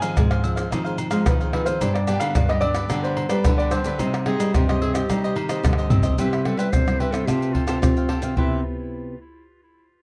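Lively and sunny, this samba and choro excerpt moves at 110 BPM in a straight 4/4, shifting from C harmonic minor to C major at 6.2 s, where a drum fill hands off to a Cmaj7. A dark, mellow baby grand carries the melody with short sustain over crisp picked cavaquinho, a fingerpicked classical nylon-string guitar with audible finger squeak, and a full-bodied second nylon-string guitar holding the bass in the background, while agogo bells, maracas, pandeiro, tamborim and a tight surdo sit up front with hard hands. A clear, smooth-topped clarinet enters at 4.3 s with a classical-style second line touched by tape echo, all captured as a dry, close 1970s-style studio recording.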